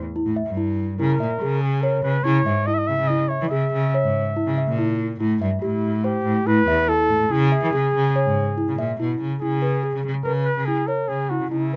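Moving in a straight, uneven five-beat meter, this restless, hypnotic contemporary chamber excerpt places a mellow, classical-style solo flugelhorn melody up front over bell-like, delicate celesta arpeggios entering at 0.2 seconds and a single rich, bowed cello bass line with smooth vibrato from 0.3 seconds, all captured by close, detailed microphones in light reverb, with the harmony settling on C#m7 at 9.4 seconds.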